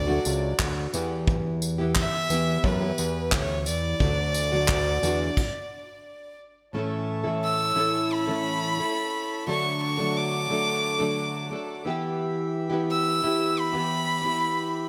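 A close, airy violin carries the melody over fingerpicked, double-tracked nylon-string guitar in this carefree acoustic pop excerpt at 88 BPM in D major, with a fat, detuned analog bass and a soft brush kit with handclaps, tambourine and gated reverb dropping out at a stop around 5.4 seconds before a reedy, breathing pedal harmonium enters at 6.7 seconds, all set in a lush hall and a bright 1980s-style digital sheen.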